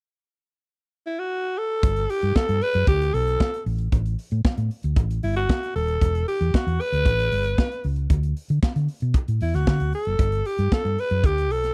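Disco at 115 BPM in a straight 4/4, this short cut from a longer piece carries a glamorous, sultry mood. A raspy alto saxophone enters at 1.1 seconds and takes the melody as a bright, gritty solo voice with vibrato and scooped notes, sitting up front in a pop style. At 1.8 seconds a hollow-body short-scale fingered electric bass joins with a dark, round, amped tone, alongside a modern studio drum kit built on hi-hat, a punchy kick and a medium-tuned snare. The drums sound acoustic and roomy, with a rolled-off top and a distant quality even while placed forward in the mix. The harmony moves through Gadd9 and Em with chordless stretches between them, and the whole recording sits in a small room ambience.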